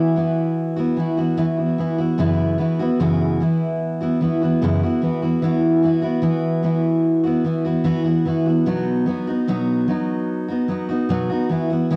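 A straight 74 BPM pulse in 4/4 carries this carefree, sunny pop fragment, where a lone picked steel-string acoustic guitar, full-bodied and jumbo-sized with audible finger squeak, sits up front in a small room with light reverb, moving through Esus2, F#7sus4 and back to Esus2 before landing on B at 8.7 seconds, all captured with the homespun character of a cassette home recording.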